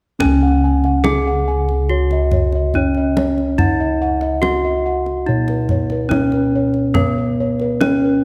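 Javanese gamelan in slendro tuning moves at an unhurried 71 BPM in a short, serene and ceremonial passage cut from a longer piece, set in a moderate concert hall reverb. Up front, a bright, ringing bronze metallophone struck with a horn mallet carries the melody, while close-miked, dry bossed gongs play full, round arpeggios and a second set of bossed gongs, mellow and soft under padded beaters, holds the bass with a round, beating tone. A deep kendang adds percussion with a live-room sound, playing from 0.2 to 8.0 seconds.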